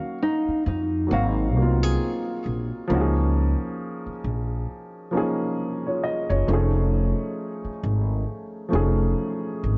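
A growly, woody upright bass anchors this hazy, nostalgic hip hop excerpt, plucked pizzicato on steel strings and sitting up front from 0.5 seconds onward. A dark, mellow upright piano with a smooth, vintage character carries the accompaniment throughout, softened by a low-pass filter. At the start, a thumb-plucked nylon-string guitar in a classical style offers a brief melodic phrase, filtered and touched with analog delay, before falling away at 2.2 seconds. The tempo is a slow 67 BPM in 4/4 with a swung sixteenth-note feel, moving through Ebm9, Ab13 and Db6 before landing on F7alt. Light small-room reverb and a warm, dark production, with the top end rolled off, give the whole piece a close, dusky atmosphere.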